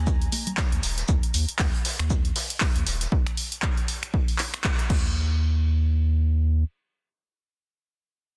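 Sunny and soulful, this short deep house cut rides a swung groove built on a round, nasal analog bass that pumps against an up-front, tape-toned electronic kick and a punchy analog drum machine of handclaps, finger snaps, hi-hat and crash cymbal. A silky, chorused string pad glints in the background only until 1.1 seconds, soft-handed congas appear briefly near the start, and a gritty vintage kit of hi-hat, shaker and high-passed snare adds texture until 3.1 seconds. The dry, dense, heavily limited mix hits a band accent before the drums stop at 5.0 seconds, leaving the deep bass alone.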